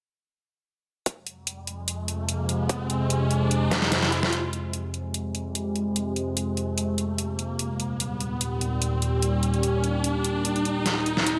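A half-time groove in 4/4 with a light sixteenth-note swing drives this chaotic, heavy wobble dubstep passage, cut from a longer piece: an overdriven kit with hi-hat and a deep snare sits up front from 1.1 seconds, alongside a punchy, distorted kick that drops away at 3.8 seconds. An evolving, warbling sine wavetable pad with chorus, slow attack and sidechain pumping holds sustained chords moving from F minor to E-flat to A-flat under repeated filter sweeps. An electronic riser climbs beneath it all, and drum fills mark the build-up that starts at 4.3 seconds in a lush hall reverb.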